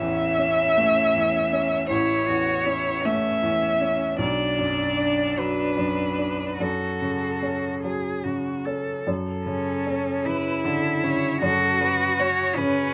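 Longing and melancholic, this 12.9-second excerpt of neoclassical piano and strings moves in a rubato 6/8 at 48-54 BPM in F# minor, with a rich, focused solo violin carrying the melody with vibrato over a smooth, even bowed cello second line, while a clear, boxy baby grand piano accompanies up front from the bass register, set in a small room with moderate reverb and a rough home-demo mix.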